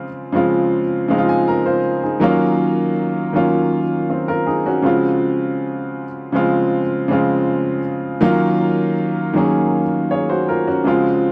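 A solo grand piano, intimate and boxy with audible action noise and placed up front, opens this smooth, silky soul passage at 80 BPM in Eb dorian (tuned to A4 = 441 Hz), adding a fill from 0.7 to 2.2 seconds as it moves between Dbmaj7 and Ebm9 across a short stretch cut from a longer piece, captured in a dry, close 1970s-style studio sound.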